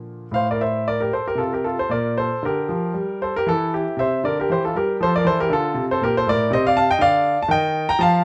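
A clear, intimate concert grand sits up front in a moderate stone-walled room, with the soft clatter of its action audible beneath the notes. This short section of a longer piece is a baroque-style suite movement for solo piano in F major, moving in 3/4 at about 117 BPM with uneven beats and a flexible rubato feel. The mood is flowing and dance-like, and the piano's range stretches from a deep bass A2 up to B-flat5, with each tone ringing on in long, polished sustain. The harmony moves from F over A to G minor seventh over B-flat, then to C and back home to F before turning to C minor near 6.5 seconds. The piano plays alone throughout and the fragment ends at 8.2 seconds.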